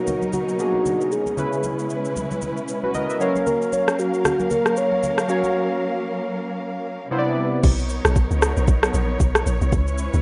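Relaxed and warm, this swung amapiano groove opens with a round, triangle-toned synth lead carrying chorus and delay over airy, warbling vintage keys and bowed strings rich with vibrato and sidechain pumping, while a soft electronic R&B kit of kick, rim click, shaker and crash sits up front beside close, dry congas, until a break at 5.5 seconds leads to a drop at 7.6 seconds where a deep, dark FM log drum bass enters, all in a rough home-demo mix with light digital reverb.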